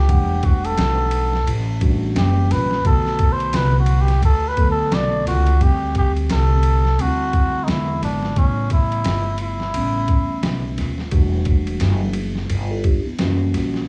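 A cup-muted trumpet leads this mellow, smoky jazz-hop excerpt. Its veiled, breathy tone carries a light vibrato and a raspy growl, roughened by cassette tape grit and analog delay. It plays a jazz-style solo through the opening 5.6 seconds and drops out at 10.8 seconds. Underneath, a pizzicato upright bass with steel strings sounds woody and saturated, while a clean tine electric piano plays through its built-in speakers, moving from Em11 through F#7b9 and Bm7, then D7sus4, E9 and A9 before returning to Em11. The trip hop sampler-style drum kit is compressed, pitched down and up front, with a thumpy kick, a medium-tuned snare, hi-hat and ride cymbal, all carrying a tape-soaked character. Set at 87 BPM in 4/4 with swung sixteenths in E minor, the dry, intimate sound has the lo-fi feel of a home cassette recording.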